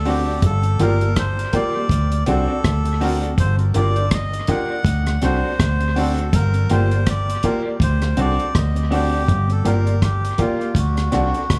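A hypnotic, serious roots reggae passage, cut from a longer piece, swings gently in 4/4 over a steady alternation of Gm7 and D7, tuned slightly flat of concert pitch. Up front sit a round, punchy foam-muted electric bass and a dry, dark drum kit with a tight kick, hi-hat and rim clicks, the drums carrying dub echo, while a woody, slightly detuned upright piano plays stabs and a clean, compressed electric guitar sits in the background with analog chorus and tape echo. Above them a reedy, breathy melodica carries the melody through tape echo in an echo-heavy mix with little reverb.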